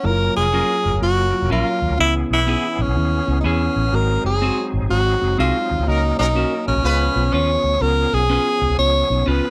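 A breathy tenor saxophone opens this uplifting, swung soul excerpt up front, its subtone, vibrato and scooped notes carrying the melody over a mellow tine electric piano and a reedy tonewheel organ that sits in the background with fast rotary speaker, light overdrive and key click. A round, foam-muted fingered bass enters almost at once, and a dark, clean electric guitar adds picked stabs with slapback echo from 0.5 seconds. A tight, smooth-topped horn section plays a second line from 5.9 to 7.2 seconds as the band lands an accent, the whole set in a lightly reverberant room.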